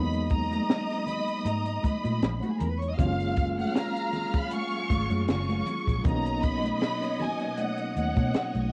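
A compact cocktail drum kit leads the mix from 0.1 seconds, with a punchy kick, a high-tuned snare and hi-hat, its dark, rolled-off tone further softened by cassette tape. This is lush, romantic 1970s-style soul in F# major at a relaxed 78 BPM in 4/4, with a smooth, lightly swung sixteenth-note feel. A violin section carries the bowed, expressive melody with vibrato, sitting close and taking on a cassette-tape tint and plate reverb. Alongside it, a string section adds a lush second line, while an overdriven tine electric piano played through a combo amp supplies gritty, barky accompaniment with medium tremolo. A foam-muted, round fingered electric bass anchors the low end, ringing high-tuned congas enter in the background at 0.5 seconds, and at 3.6 seconds a swirling, warbling string machine adds bright sustained chords through ensemble chorus and phaser. Over chords moving from Emaj9#11 to F#maj9 to Bmaj9, this short excerpt from a longer piece has the intimate booth ambience of a home cassette recording.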